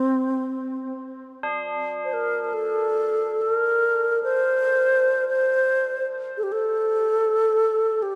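An alto flute with a wooden head opens this meditative world piece alone, its airy, vibrato-laden line sitting up front with a soft attack and a trail of tape echo as it moves between C4 and C5. At 1.4 seconds, quieter tubular bells struck with a plastic hammer enter on a single D4, adding a solemn, metallic ring alongside the melody. A huge, wet ambient reverb and a cassette-tape grain give this short passage from a longer work a spacious, haunting atmosphere.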